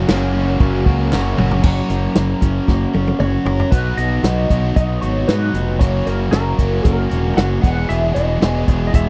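Driving and sunny, this short classic rock excerpt rolls along in a straight, steady 4/4 with a dry, close 1970s studio sound. A dark, slightly broken-up lead guitar carries the melody through a wah, its compressed tone riding over two picked, overdriven rhythm guitars that play the riff, one of them crunchy. A double-tracked semi-hollow guitar with tremolo adds a hollow-body shimmer in the background before dropping out at 1.6 seconds. During the opening moments, a gritty, reedy electric piano through a combo amp and distant handclaps ringing in a large room sit further back. Up front, a growling fingered bass with bright, amped overdrive anchors the low end, while a vintage acoustic kit with dark cymbals, a medium-tuned snare, a tight kick and a rolled-off top pushes the groove and adds fills. The harmony moves off its home chord at 3.7 seconds as the final section opens.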